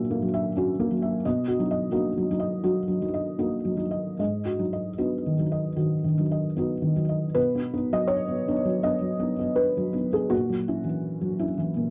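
Played rubato in a loose 4/4 that drifts between 74 and 86 BPM, this short neoclassical minimalist piano piece in B major unfolds with a peaceful, hopeful calm, cut from a longer work. A felt-muted upright piano plays alone, sitting up front with a dark, intimate tone, thick felt, short sustain and audible action noise, ranging from G#2 to E5 over chords such as Bmaj7 and G#m7. At 7.4 seconds the music moves into a new section that settles on B before returning to F#7/A#, all within a moderate booth ambience.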